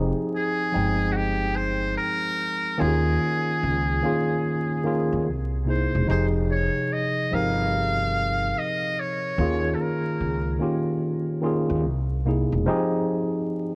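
Reflective and melancholic, this short hip hop excerpt moves at a slow, swung lope in a steady four. A mellow tine electric piano carries the harmony from the first moment, its slightly out-of-tune, worn tone sitting up front with a cassette tape colour as it cycles through Fm9, Eb9sus4 and C7alt. Beneath it, a woody, thumpy upright bass with gut strings is plucked pizzicato, running until 12.7 seconds. A trumpet with a metal mute enters at 0.4 seconds to take the jazz-style melody, its buzzy, thin sound carrying vibrato and a soft attack, and it falls silent at 10.6 seconds. The whole recording is wrapped in light reverb and small room ambience, with warbling old tape, vinyl crackle and drifting pitch giving it a dusty, aged feel.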